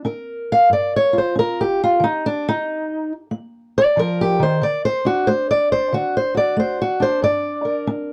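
A fingerpicked old ladder-braced acoustic guitar, dark and woody with a boxy, old-strings tone, plays alone and up front through this brief, mournful, brooding acoustic country blues fragment in G minor at 92 BPM with a swung 4/4 feel, moving from Gm7 through Eb5 and D back to Gm over 8.1 seconds in a moderate booth ambience.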